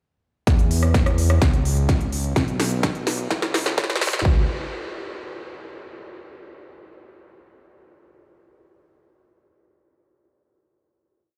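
Heard through a big sound system in a bare stone room with light reverb and a high-pass filter, this short, complete festival progressive house piece in C# minor at 127 BPM feels emotional and powerful. From 0.5 s a punchy, up-front electronic kick drives four-on-the-floor beneath a layered big-room kit of crisp hats, rim clicks and a punchy snare, while a fat, detuned sawtooth bass, pumping from the sidechain, follows the chord rhythm under a filter sweep. A drum fill carries the build until 4.3 s, and a final note rings on to 6.1 s.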